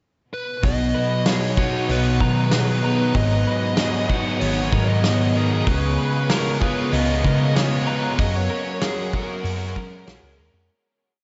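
A fuzz lead guitar opens this short, wistful piece of shoegaze and dream pop at 0.3 s, picking a compressed, distorted melody of motif-based sentence phrases through delay. At 0.6 s the band arrives at a steady 95 BPM in 4/4 and F# major. A distant, roomy indie drum kit with a punchy kick, a medium-tuned snare and hi-hat sets up a big, loose rock groove, while a dark, round hollow-body bass plays a dotted figure. Two overdriven guitars pick arpeggiated riffs: a crunchy one in the background, bathed in reverse reverb, and a very quiet semi-hollow one. From 0.9 s a lo-fi, slightly broken-up guitar through a small old amp adds a fingered ostinato with analog chorus and delay, and a vintage string machine cello pad holds full-bodied, sawtooth chords with a sub octave and soft attack. The chords move from B to G#m7 and C#7 before settling on F#add9 as the fade-out begins at 8.2 s, with the whole dreamy mix soaked in a huge ambient reverb and a rolled-off top.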